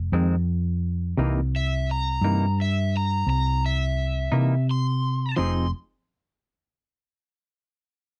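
A slow 12/8 blues at 57 BPM rolls along with a straight feel in F minor, tuned slightly below standard pitch to A4 = 437 Hz, in this brooding, soulful fragment cut from a longer piece. A dark, round hollow-body bass, played with the fingers, sits up front from the opening, while a clean semi-hollow electric guitar supplies warm, compressed accompaniment coloured by a pulsing harmonic tremolo. The harmony moves from Fm7 to a tense C7#9 before returning to Fm7 at 5.4 seconds, where the music turns a corner into a new passage. At 1.6 seconds a cranked stack guitar enters high above the band, its picked lead bright and overdriven, with a slapback echo trailing each phrase. The sound is dry and close, like a 1970s studio session, with little reverb and the lead sitting a touch lower in the mix than the bass and rhythm guitar.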